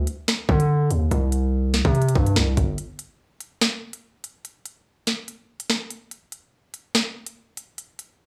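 Menacing and cold, this short drill cut from a longer hip hop piece moves with a half-time feel in 4/4. A distorted 808-style bass opens the clip, its sine core roughened by a noise layer into an aggressive, heavy weight with a fast attack and decaying tail, sitting up front before it stops at 2.8 seconds. The electronic drum kit enters at 0.1 seconds with a knocking kick, a sharp snare, crisp hi-hats and finger snaps, and carries on alone through the break until 8.1 seconds. The sound is dry and gritty, like a hardware recording in a small room with little reverb, which keeps both parts close and up front.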